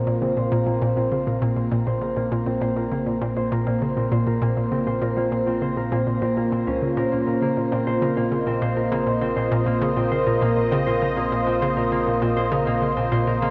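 Ambient, sequencer-driven space music in Bb minor at 100 BPM, cosmic and hypnotic, cut from a longer piece and resting on a single Bbmadd9 chord. A bright, detuned sawtooth pad with lush chorus and shimmer reverb holds sustained chords up front, while a bouncy, warbling square-wave pluck with a noise layer repeats a riff in the low register and a fingerpicked concert harp rings out arpeggios through a low-pass filter, analog delay and a filter sweep. Underneath, a round sine sub bass fades in across the full 13.5 seconds, and the whole dreamy mix is soaked in a huge reverb with a 7.2-second tail.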